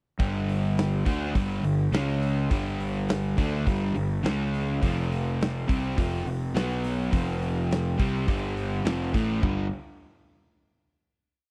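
At 0.2 s an overdriven semi-hollow guitar, a fuzz-drenched fingered bass and a big rock drum kit all come in together on a gritty, raunchy blues rock riff with a southern rock swagger, moving at a straight 104 BPM in 4/4 and centered on G mixolydian. The double-tracked guitar sits up front, playing a picked power-chord riff with a hollow-body tone and a touch of spring reverb. The growly, bright bass doubles that riff in a lower register as a syncopated line, its fuzz and overdrive adding a snarling edge. Underneath, the dark, smooth-sounding kit drives a big rock groove with a punchy kick, a medium-tuned snare, hi-hat and toms. The harmony cycles through G5, C#5, F5 and B5 power chords before the riff gives way to a final G5 chord at 9.4 s, ringing until about 11.5 s. The production is dry and close, with the raw immediacy of a 1970s studio.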